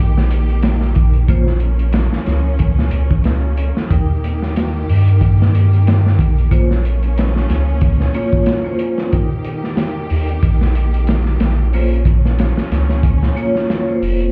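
Smoky and brooding, this trip hop excerpt moves at 92 BPM in 4/4 with a swung sixteenth-note feel, drifting between Eb and Bbm chords throughout its 14.3 seconds. A deep, round dub sub bass sits up front, its soft tone given a touch of tube saturation. The crunchy breakbeat kit enters at 0.2 seconds, with a tight kick, a medium-tuned snare and hi-hat sounding gritty and dark under a rolled-off top. Over this, a vibraphone played with medium hard mallets rings with a metallic, close-miked presence and slow motor vibrato, shimmering through its tremolo. A clear, focused studio string section holds sustained bowed chords beneath it, its vibrato joined by a biting edge. The whole mix comes across as if heard muffled through a wall, wrapped in club reverb.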